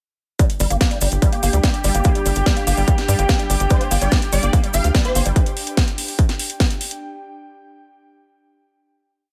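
Lightly reverberant and intense, this driving psychedelic trance piece in G minor at 145 BPM drops in at 0.4 seconds with an up-front distorted four-on-the-floor kick, a techno kit of cracking snare and metallic hats, and grainy hand-played cabasa sixteenths, joined at 0.6 seconds by a tight, punchy galloping sequencer bass, while a woody, wave-folded acid pluck riff with dub echo loops six steps against the bar, an airy breathy pad and an evolving wavetable pad holding a high note pump softly in the background, and a swarming, detuned rave lead with phaser and dub echo repeats its riff from 3.7 seconds.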